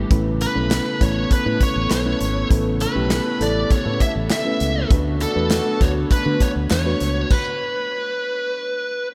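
A bluesy, distorted lead guitar sits up front, carrying the melody in a high register through a diffuse ambient delay. Beneath it, this excerpt of 1980s-style pop moves at 100 BPM in a straight 4/4, tuned slightly below standard pitch, with an urgent yet nostalgic mood. A soft, chorused FM electric piano holds the harmony alongside a shimmering, retro pulse-width pad in the background, shifting from Aadd9 to D6 at 4.9 seconds. A round, dark fretless bass with analog chorus and a modern studio kit with a punchy kick and medium-tuned snare drive the groove, joined by a barely audible, crisp group handclap. The whole mix is soaked in a dreamy cathedral reverb, and when the band stops at 7.3 seconds, the guitar rings on alone until 9.1 seconds.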